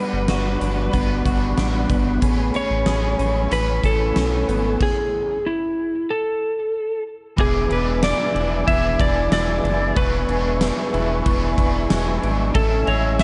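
From the opening instant, a floating, dreamy dream pop passage unfolds: an up-front electric slide guitar, played with fingerpicks and lightly broken-up, carries the melody through tape echo. Beneath it, a biting, double-tracked overdriven guitar shimmers with harmonic tremolo and analog chorus, a mellow, flute-like tonewheel organ holds soft chords in the background with key click and chorus vibrato, and a lo-fi guitar through a small old amp plays fingered arpeggios coloured by chorus and echo. A round, deep analog bass and a huge arena drum kit join almost at once, the kit pairing a fat snare and punchy kick with bright cymbals and tambourine. At 4.1 seconds a very quiet glockenspiel struck with rubber mallets adds a faint, bell-like ringing, just before a stop at 4.8 seconds suspends the harmony until a new section arrives at 7.4 seconds on a dominant seventh chord. The production is dark, with light reverb and a small-room ambience, and this is a fragment of a longer piece.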